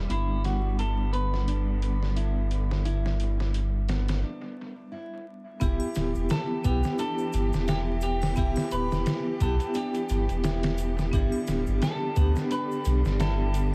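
Smoky, dark trip hop excerpt in E minor at 87 BPM with a swung sixteenth feel, where a round sub bass sits up front beneath ringing hard-mallet vibraphone with tremolo, tape echo and a filter sweep through the opening, lush bowed strings carrying sustained chords with 12-bit grit, a clean hollow-body electric guitar melody and fingerpicked nylon-string arpeggios both steeped in echo, and a compressed, pitched-down sampler drum kit with a thumpy kick. A break arrives at 4.2 seconds, and a tube shaker, handclaps and triangle join in the background at 5.6 seconds as the harmony moves from G to E minor, all set in an echo-heavy mix with vinyl crackle.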